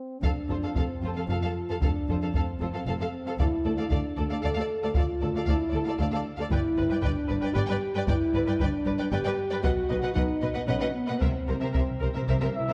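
Majestic and adventurous, this epic orchestral film-score fragment in 3/4 sets a mellow, close-miked French horn section's sustained chords up front over lush bowed strings (a distant violin melody, a focused second violin line, soft-attack violas, and expressive cello and double bass sections in the background), driven by heavy-stick taiko drums, with round calf-head timpani entering for a fill at 11.2 s and a vintage trumpet stab at 12.6 s inside a dark scoring-stage reverb.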